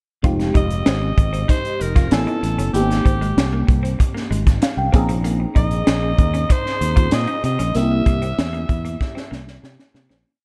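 A raspy alto saxophone with scooped notes, light vibrato and analog delay carries a motif-based pop melody from 0.6 s over a dreamy, reverb-soaked bed of nocturnal, urban 1980s jazz-funk pop, where a phased FM electric piano with a soft pad layer holds mellow rootless chords and slips in a short fill at 4.3 s, a clean picked electric guitar plays a muted single-note line in the background through lush chorus, a growly overdriven fingered bass drives an agile syncopated line, and a gritty fusion drum kit with a high-tuned snare keeps a crisp sixteenth-note studio groove, adding a closing fill as the piece fades out from 7.8 s.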